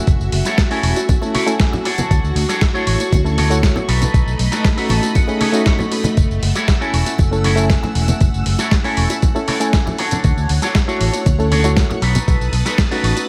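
This excerpt has a lightly reverberant sound, with a gritty, thumpy electronic kick and a dark, round fingered bass sitting up front. It's a sensual, sleek nu-disco groove at 118 BPM in 4/4 and F# minor, cycling through F#m7, Dmaj7 and B7. A dusty soul sampler-style kit supplies hi-hat, a medium-tuned snare, tambourine and woodblock in a small room, while bright, dry bongos and congas played with soft hands sit in the background. A reedy electric piano with fast tremolo and diffuse delay carries the accompaniment, and a lush, vintage string machine holds slow-attack sawtooth chords through phaser, ensemble chorus and sidechain pumping. A twangy, picked electric guitar through an envelope filter and analog chorus plays the riff from 0.5 seconds, and a clean electric guitar fill cuts in between 4.6 and 6.2 seconds.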